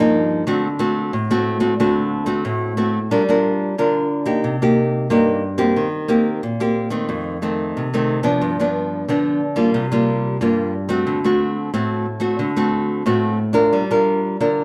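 A lone fingerpicked nylon-string guitar, small and up front, carries this nostalgic yet lively samba in a straight 4/4, cut from a longer piece. It opens on a D7 before moving into a second passage at 3.1 seconds that travels through Gm7, Cm7, Eb6 and F7, then G7, C7sus4 and D7, landing back on Gm7 at 13.7 seconds. The dark production sets the acoustic guitar in a large studio bathed in wet reverb.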